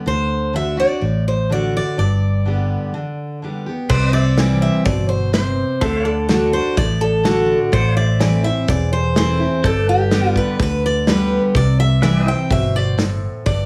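Two picked jumbo acoustic guitars sit up front in this sunny, nostalgic honky-tonk and classic country excerpt at 126 BPM, one bright and full-bodied playing accompaniment while the other carries the melody, over a round, foam-muted vintage electric bass with an amped tone. After a short break from 2.9 s, the music settles into C major at 3.9 s, where a small-room country drum kit with a punchy kick, medium-tuned snare and dark cymbals enters, along with a clean, compressed pedal steel guitar that plays sustained chords with volume swells in the background. The chords move through D, G, C, D, Am, G and back to C, all set in a moderate studio reverb.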